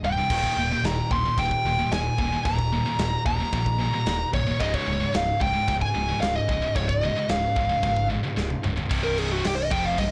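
This heavy-metal excerpt opens at once with two scooped, high-gain rhythm guitars grinding out a low riff alongside a growly, direct picked bass, one guitar sitting further in the background than the other. A dark, distorted lead guitar enters at 0.1 seconds and carries the melody up front with a touch of delay, while a modern studio drum kit joins at 0.3 seconds with a punchy kick, a medium-tuned snare, toms, and bright crash and china cymbals in a pumping room. At a steady 112 BPM in straight 4/4, the harmony moves from Eb to Db, keeping the mood heavy and relentless. A drum fill at 8.4 seconds leads into a new section at 8.9 seconds, where the lead breaks into a solo over a C5 power chord. The whole mix sits in light reverb and sounds blown-out and overdriven, and the clip is cut from a longer piece.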